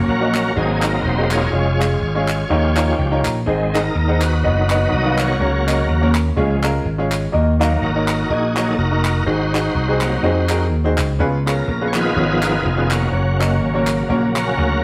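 A bright, shouting tonewheel organ with key click, light overdrive, chorus vibrato and a slow rotary speaker takes the solo from the first moment over a clear, worn grand piano, joined by a round, punchy slap bass up front and crisp, close group handclaps in this jubilant, uplifting uptempo gospel cut at 124 BPM in a swung 4/4 in F# major, with the piano adding fills at 2.5 and 14.1 seconds as the live band rings in a moderate stone room.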